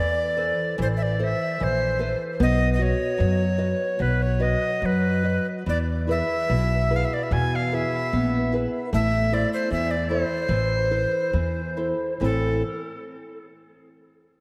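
A bright, reedy tenor recorder carries the melody up front, its airy, tongued tone and touch of chiff trailed by tape echo in this mournful, longing fado-style ballad with a loose, rubato 2/4 feel. Beneath it, a small-sounding fingerpicked nylon-string guitar with subtle chorus and audible finger squeak moves from Amadd9 through B and E back to Am, while a woody, thumpy pizzicato upright bass on steel strings anchors the low end. A lush hall reverb soaks this up-front trio in a dreamy wash, and the clip is cut from a longer piece.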